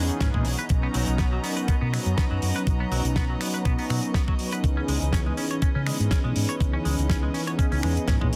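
Groovy and sleek, this short nu-disco clip at 122 BPM in C# dorian rides a lightly swung 16th-note feel, with a thumpy, up-front electronic kick and a dry, damped 70s kit of finger snaps, hi-hat and fat snare under a round, punchy hollow-body bass. A clean, picked semi-hollow guitar riff is bathed in lush chorus and analog delay, over a detuned sawtooth analog pad with chorus, delay and sidechain pumping, while a bowed chamber string section pumps softly in the background as the harmony moves from Bmaj7 to C#m9 at 4.6 seconds, all in a light studio reverb with a dense, heavily limited modern master.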